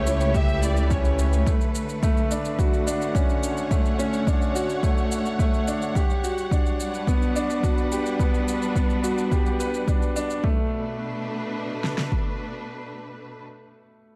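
This cut from a longer piece of piano and strings electronica opens in B minor at 107 BPM in a straight 4/4. A clear concert grand piano riff, a lush bowed string section holding sustained chords under a low-pass filter, a brief vibrato-laden violin melody with digital delay, and a dark, rumbling detuned saw bass with sidechain pumping all sound together at the start. An overdriven electronic shaker enters almost at once, joined moments later by a deep house drum kit with a punchy kick and fat snare, overdriven and layered, both set in studio reverb. The violins and bass drop away within the first seconds, and the smooth, vintage-toned piano, with its deep bass and its own digital delay, sits up front over the filtered strings and drums. The harmony moves from A7/C# through Dmaj7 and Gmaj7 before settling on Bm7 at 10.4 seconds, where the shaker stops, and the moving, cinematic mood sits in light reverb and a small room ambience.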